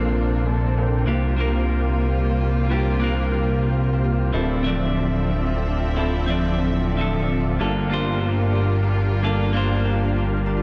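A swung, half-time future bass groove carries this lush, dreamy excerpt, where a fat, detuned analog bass sits up front beneath a huge, airy supersaw riff with vibrato and delay, bright, twangy clean electric guitar accompaniment, a ringing concert harp playing arpeggios in the background, and reedy, gut-string chamber strings holding sustained chords through 12-bit sampler grit, all in light digital ambience as the harmony moves from Bbmaj9 through C7sus4 and Dm9 to Gm7.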